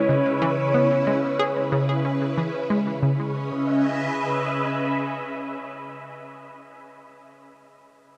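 A soft, round octave-layered synth lead with a dark sub-octave, vibrato, chorus, phaser and delay sings a single C#5 melody over swirling vintage string-machine chords and a detuned analog pluck riff with a noisy, fast-attack bite in this expansive, hypnotic excerpt of sequencer-driven ambient space music at 92 BPM in C# minor, resting on C#m7 inside a huge 8.4-second reverb, as the lead drops out at 2.4 s, the pluck at 3.3 s, and the up-front phased strings sustain alone until 6.4 s.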